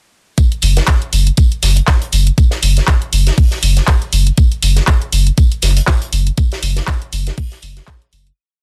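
A dense, heavily limited modern master with little reverb gives this short, complete acid house piece a tight, close-up sound and a trippy, hypnotic mood at 120 BPM in 4/4, with a 56% swing on the sixteenths. A thumpy, sampler-style electronic kick, re-recorded in a small room and placed up front, drives a four-on-the-floor pulse from 0.4 seconds. Over it, a tape-warm analog drum machine supplies programmed closed and open hats and a clapping backbeat. Further back sits an acoustic drum kit in a looped, edited breakbeat of bundle-stick hi-hat, tambourine and a fat snare, its hats and percussion pumping against the sidechain, its snare softly clipped and high-pass filtered. A round, deep sine sub bass with a fast attack and tube saturation enters at 0.6 seconds on F#1, sustaining off-beat notes that pump with the sidechain. The whole groove runs to 8.4 seconds, fading out from 5.7 seconds.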